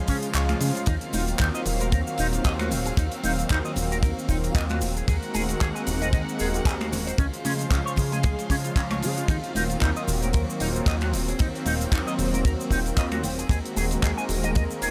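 An up-front, tight kick drum drives this groovy, cosmic nu-disco excerpt at 114 BPM in Eb dorian with a swung sixteenth feel, dropping out from 0.3 to 0.9 seconds, beneath a dark, glossy chorused synth bass, a twangy, clean electric guitar riff through an envelope filter with tape echo, a detuned, warbling analog pad pumping with the sidechain, a distant symphonic string section holding chords in the background, a polished funk drum kit with snaps, handclaps and cabasa, and very quiet tambourine and congas played with hard hands.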